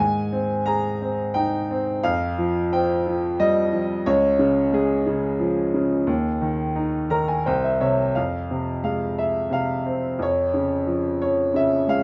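Classical solo piano in a moody, brooding, lyrical vein, this fragment of a longer piece moves at a rubato 88 BPM in 3/4. A clear, boxy baby grand sits up front in moderate studio reverb, tuned to A4 = 438 Hz, drifting through Ab, Fsus2 and Db before a fill at 6.8 s leads into F harmonic minor at 8.2 s, where Fm gives way to Db/F.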